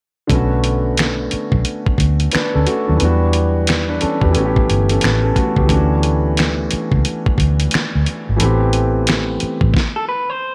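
A swung sixteenth-note groove in 4/4 drives this smooth, soulful R&B and neo-soul excerpt. It is carried by a dusty, gritty, compressed sampler-style drum kit up front, with a thumpy kick, fat snare, hi-hat and finger snaps. Beneath it, a vintage muted fingered electric bass sits low and round, its dark, amped tone slightly louder than the other parts. A warm baby grand piano, natural and up front with long sustain, supplies the accompaniment through Bm7, Em7, A7, Dmaj7 and Am7 from 0.3 s before the chords drop out. At 10.0 s an electric guitar through a small old amp takes a brief second line on its own, slightly broken-up and lo-fi, while light reverb lends the recording a gentle sense of space.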